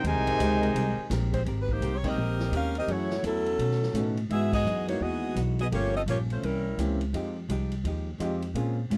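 A joyful big band swing excerpt in Ab major at 169 BPM opens with a brief burst of smooth trumpets over a light-vibrato trombone line, a dark picked hollow-body guitar in the background, a woody pizzicato upright bass up front and a distant, roomy drum kit, before clear trombone chords slip in and a close-miked saxophone section takes the melody from 1.6 seconds, joined by an intimate upright piano with audible action noise as band accents hit at 2.0 and 4.5 seconds over chords moving from Abmaj9 through Gbm7, B9 and C7b9 to Fm9.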